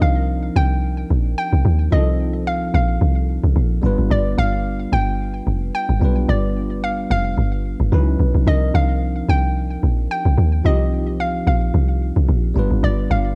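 A deep, round log drum bass sits up front from the start, its percussive FM thump decaying beneath a bell-like tine electric piano coloured by phaser and a hollow, bouncy square pluck carrying the melody through chorus, tape echo and cassette grit. This late-night amapiano cut moves at 110 BPM in C dorian with a light 16th-note swing, circling Cm11 and G7 with a brief Dbm11 turn near 7.9 seconds. The dry, home-taped sound keeps the dark bass prominent while the piano and pluck stay lower in the mix, all three parts playing throughout the 13.3-second excerpt.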